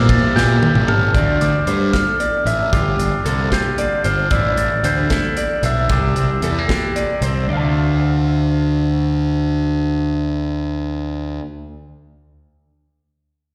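Math rock with a midwest emo tint, this short cut from a longer piece moves at 76 BPM in a straight 6/8 and sits in D minor, sounding wistful and intricate. A mellow, bell-like glockenspiel struck with rubber mallets carries the melody high above, ringing through slapback echo and analog delay until 6.9 s, while an electric guitar through a small old amp spins slightly broken-up, lo-fi arpeggios under the same echoes. A fuzz-soaked picked bass sits up front with overdrive, and a modern studio drum kit with a punchy kick and medium-tuned snare drives things, opening with a fill between 0.4 and 1.1 s. A double-tracked, crunchy overdriven guitar riff sounds only in the brief opening, then a bright, twangy clean guitar takes over accompaniment from 1.2 s with its own slapback echo. The harmony drifts through lush extended chords such as Dm9, Gm9 and C9 before settling on Dm7, all heard as a live gig through the venue's PA with a recital hall's reverb around it.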